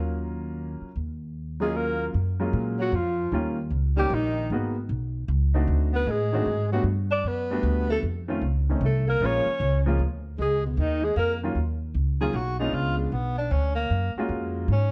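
A late-night, cool small-group jazz passage in swing and bop style opens with alto saxophone, tenor saxophone, baby grand piano and upright bass all sounding together at 153 BPM in a swung 3/4, centred on F# major. The mellow alto carries the melody up front with vibrato and a smooth top, while the tenor sits further back, distant and roomy, playing a second line with a soft attack. The clear baby grand piano comps with short sustain, and the pizzicato upright bass is woody and prominent, its steel strings giving it a firm presence. The harmony moves through rich extended chords such as Ebm9, F#maj9, D7b9 and Gmaj9, and the alto drops out at 11.3 seconds. From 11.6 seconds the music turns to Eb minor and the tenor takes a solo over the remaining bass and piano, with plate reverb on the horns and piano and a light room ambience under a cassette-tape colour.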